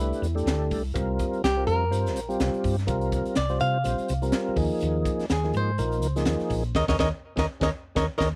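Slick and funky, this short cut of electric jazz fusion swings its sixteenths at 124 BPM in 4/4, moving through lush suspended chords from D13sus4 to C7sus4 and on to D#13sus4. A fingerpicked flamenco guitar carries the melody with audible finger squeak over a mellow, dark tonewheel organ coloured by light overdrive, chorus vibrato and a slow rotary speaker, while a woody, round fretless electric bass with a hollow-body, amped tone sits up front beside a crisp drum kit whose high-tuned snare, punchy kick and hi-hat sound gritty and saturated in a small, pumping room. The band hits an accent from 6.8 s, and the organ slips in a brief fill at 8.0 s, with light reverb lending the mix a touch of space.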